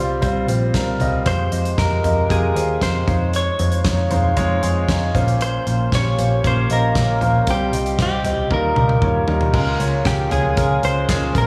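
A dreamy, reverb-soaked mix in a lush hall carries this earnest, dramatic piano-driven pop excerpt at 116 BPM in straight 4/4, built around a clear, intimate concert grand with audible action noise, deep bass and subtle chorus, alongside a direct-recorded clean electric guitar whose compressed melody trails diffuse ambient delay. A dark, foam-muted picked electric bass anchors the harmony as it moves from Csus4 through Fmadd9, Dbadd9/F and Bbmadd9, while a modern studio kit with a punchy kick, fat snare and bright cymbals joins at 0.2 s and plays a fill before the change to Db6 at 9.5 s. At that point a thick, detuned sawtooth pad with chorus fades in behind the band, and very quiet, crisp group handclaps appear at 10.1 s.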